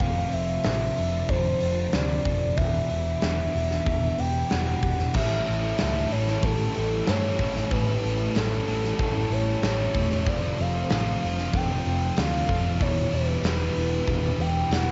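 A breathy, gliding sine lead carries the melody from the start through chorus, cassette tape colour and analog delay, over a swirling phased string machine, shimmering octave-doubled twelve-string acoustic arpeggios with finger squeak, a dark fuzz guitar riff in the background and a round, amped picked bass, as the chords move through F6, Em7 and A7. A huge arena drum kit with a punchy kick and medium-tuned snare sits up front, an overdriven electric guitar riff bathed in reverse reverb joins at 5.1 seconds, and a jingly, very quiet tambourine enters at 5.8 seconds. This dreamy, wistful shoegaze and dream pop passage, cut from a longer piece, has a lo-fi home cassette sound with light reverb and small-room ambience.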